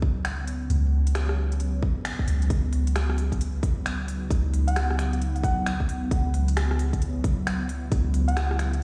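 A vinyl-crackled excerpt heard through a big sound system in a bare stone room, this rainy, nocturnal future garage groove in C# minor at 133 BPM with a swung 4/4 feel sets an ethereal, detuned pad pumping over a deep, round 808-style bass and a tight, tape-warm kick up front, while an overdriven kit of finger snaps, smooth hats and rim clicks joins at 0.2 seconds. The band accents at 2.1 seconds, shortly before Bsus2/C# gives way to C#m11 at 2.5 seconds, and a gentle, keys-like FM lead with vibrato, chorus and analog delay glints on F#5 from 4.7 seconds.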